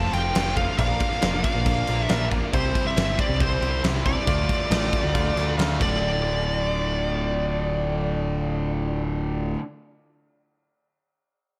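Swaggering and driving, this classic rock passage, cut from a longer piece, moves in a straight 4/4 over F, Bb, C and D minor chords. Up front, a smooth overdriven lead guitar carries the melody with a bright, picked tone, while a growling picked electric bass with overdrive sits just as forward, warm and direct. Two electric guitars play the riff: one distorted and compressed, set back in the background, the other overdriven and picked. A big rock drum kit with a dark sound, fat snare, punchy kick and crash cymbal drives the opening from 0.1 seconds, plays a fill at 5.8 seconds and stops at 5.9 seconds as the next section begins. Very quiet beneath these parts, a clear, woody upright piano with audible action noise adds accompaniment, and a mellow, flute-like tonewheel organ holds soft sustained chords through a slow rotary speaker. The mix is dry, with little reverb.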